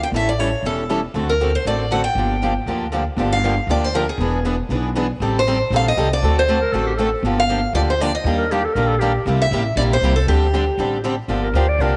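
Acoustic string swing in the jazz manouche style races along at 237 BPM with a fiery, virtuosic edge, opening in G dorian before settling into G minor at 3.2 seconds over a progression that cycles through chords like A7, Ebmaj7 and D7sus4. A bright, boxy parlour guitar with fresh strings carries the up-front melody, while two more picked guitars fill out the accompaniment, one concert-bodied and one tucked into the background, and finger squeaks are audible across all three as a woody, thumpy gut-string upright bass plucks the low end. At 6.6 seconds a distant, raspy, roomy clarinet enters with a growling second line, marked by scooped notes, subtone and light vibrato, while the whole ensemble sits in a moderate plate reverb, in what is cut from a longer piece.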